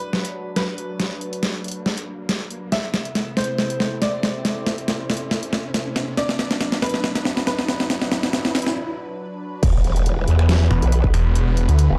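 This dark, warm recording, with light reverb, is a heavy, menacing piece of wobble dubstep at 139 BPM in a half-time 4/4 feel, with a slight swing on the sixteenths. A brilliant, worn grand piano carries a short melody through tape echo. Beneath it, a lush, detuned unison pad holds chords moving from Bm to Am/C and back, colored by chorus, phaser and sidechain pumping. An up-front, overdriven dubstep kit of deep snare, hi-hat, finger snaps and crash builds the tension, while a riser sits in the background and a filter sweep runs through the build-up, leading to a short break at 8.8 seconds. At the drop at 9.6 seconds, an impact hits on E5 and a punchy electronic kick arrives with a growling, wobbling, formant-filtered bass. A snarling sawtooth bass, distorted and carved by a moving notch, joins them at 10.7 seconds.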